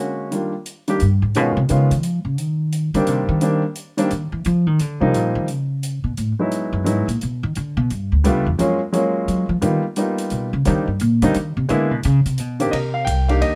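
Swinging in 3/4 at 174 BPM, this cool jazz piano trio excerpt in C minor puts a woody, growly pizzicato upright bass up front, soloing from its entry at 1.0 s through 12.7 s, while a clear, polished baby grand piano carries the melody with short sustain and a distant, roomy drum kit keeps hi-hat, ride cymbal and a boomy kick going in a lightly reverberant space over shifting chords such as Ebmaj7, Gbmaj9 and G7alt.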